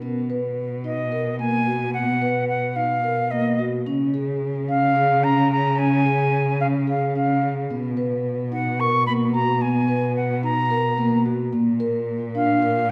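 Set in a wet, spacious scoring-stage reverb with a 1.7-second decay, this excerpt from a longer contemporary chamber piece feels urgent and restless. It moves in an uneven 7/8 at 219 BPM counted in eighths, with a straight feel. A vibraphone played with soft mallets and the motor off spins out metallic, ringing arpeggios from the start, while a single bowed cello, dark and up front, holds the bass with expressive vibrato, portamento and a smooth top. At 0.8 seconds a silver concert flute enters with the melody, its airy metal tone carrying vibrato and tongued articulation. The harmony moves from Bmaj7 to Db, returns to a B-based chord, and reaches Bb by 11.5 seconds, before the fragment breaks off at 12.9 seconds.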